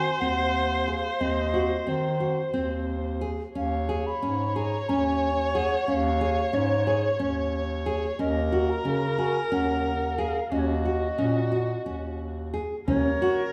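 Driving eighths at 180 BPM in a straight 7/8 give this contemporary chamber piece a restless, urgent pulse, with harmony moving from a rootless Ab7 over Eb through Dbadd9 and Gb to Ebm7. A pure, woody baroque flute carries the melody with expressive vibrato and a crisp attack, while a rich, bowed viola sings a smooth second line. Fingerpicked nylon-string guitar arpeggios and a clear, up-front bass clarinet fill out the middle and low end; a deep frame drum played with soft hands enters only at 12.9 s, all within a dark recital-hall reverb.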